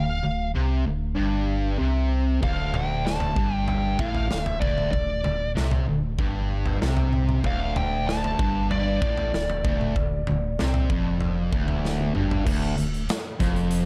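Hypnotic and ominous, this stoner and doom metal excerpt grinds along at 96 BPM in D minor, built on a double-tracked, compressed fuzz guitar riff sitting up front and a deep, full sub bass with octave carrying overdrive beneath it. A dark, picked fuzz lead guitar sings a high melody through wah, distortion and slapback echo until 11.8 seconds, while a big acoustic rock kit with a punchy kick, medium-tuned snare and bright cymbals joins at 2.4 seconds in a big room. A drum fill leads into a new section at 12.5 seconds, all held in a studio reverb with a dark, warm production.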